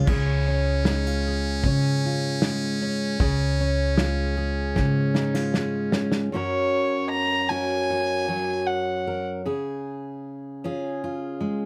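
Hopeful and warm, this acoustic folk excerpt moves at an easygoing 77 BPM in 4/4, carried by a full-bodied, fingerpicked jumbo steel-string guitar with audible finger squeak that runs throughout. For the opening 6.3 seconds, a woody, thumpy pizzicato upright bass and a loose small-room drum kit with a tight kick and crash cymbal support a buzzy, thin trumpet sounding a single note through a metal mute, and the drums close with a fill from 4.8 seconds. At 6.3 seconds the harmony moves from C# to F# as a reedy, nasal bowed fiddle takes the melody up front, before the music settles back on C# near the end under light reverb.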